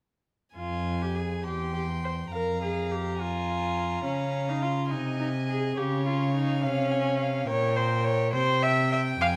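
A quick classical-period movement for string quartet in a rubato 6/8, restless and stormy, cut from a longer piece. The first violin carries the high melody with light vibrato and a gut-string tone, sitting softer in the balance than the up-front viola accompaniment, which sounds reedy yet distant, and the rich, close cello bass. A warm second violin joins at 1.4 seconds with its own line, and close, detailed microphones with a touch of reverb frame the period-style bowing.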